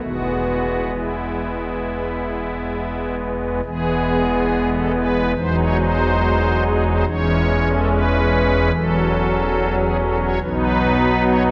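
A pipe organ playing on soft, shimmering string celeste stops sits up front for the full 11.5 seconds of this fragment from a longer classical work. It is a chorale-style passage in E major, majestic yet serene, moving in 4/4 at roughly 64-73 BPM with a flexible, rubato feel. The romantic voicing spans a deep register from E1 up to E5. The harmony travels from E through G#7/E, C#m/E and F#m7/E before arriving on B at 10.4 seconds. A lush church reverb with a 3.1-second decay surrounds the organ, giving the chords a spacious, devotional bloom.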